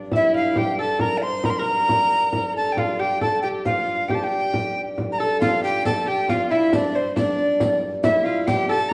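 A driving, ancient-sounding medieval dance in triple time, cut from a longer piece, where a breathy, chiffy tenor recorder carries the expressive melody up front over a reedy harmonium drone, a dark, boxy bowed fiddle and a bright, fingerpicked gut-strung lute in the background, with a small frame drum played by soft hands joined at 5.4 seconds by the compressed, jingling riq, all set in a wet recital hall reverb with a faint mains hum.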